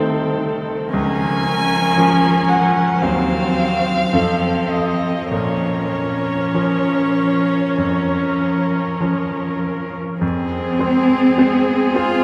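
This slow, romantic movement for piano quintet in B-flat minor opens on a diminished chord, with a bright, polished grand piano and a viola providing accompaniment while a close, focused cello and a more distant second violin carry supporting lines. At 0.9 s a rich solo violin enters up front with the melody, its expressive vibrato and portamento giving the music a yearning, melancholic voice. The tempo moves freely with rubato in a slow 4/4, between 48 and 58 BPM. The piano's brilliant, short-sustained tone sits forward, while the cello's clear, bowed line supports the melody from a lower register. The harmony passes through dominant-seventh tension back to B-flat minor, and a new passage begins on F minor at 10.2 s. A wet cathedral reverb places the ensemble further back in a resonant space, and the music is cut from a longer piece.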